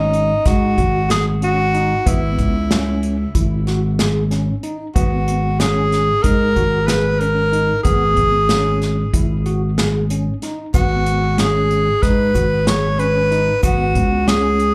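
Brooding and intricate, this progressive band piece in 9/8 at 187 BPM in G# minor, cut from a longer work and heard as a live club gig with light reverb, sets a clear, breathy, close-miked tenor saxophone melody with scooped notes and slapback echo up front over worn, slightly out-of-tune tine electric piano arpeggios lightly overdriven through built-in speakers, a growly overdriven fingered bass, an airy acoustic drum kit played with bundle sticks, punchy kick and medium-tuned snare, and a grainy egg shaker sitting in the background from 10.7 to 13.9 seconds.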